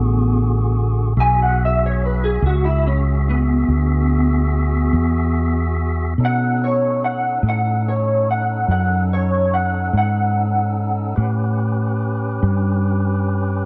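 Rolling in a slow 12/8, this soulful, rollicking blues excerpt opens on an electric guitar solo through a small old amp, its picked, slightly broken-up, compressed lo-fi tone thickened by ensemble chorus and plate reverb until it stops at 11.6 s. Beneath it a fat tonewheel organ holds sustained chords with key click and a slow rotary speaker, while a dark, round fretless bass sits up front with subtle chorus. The chords move from E7 to B7 at 6.2 s and A7 at 11.2 s, all in a warm production with light reverb.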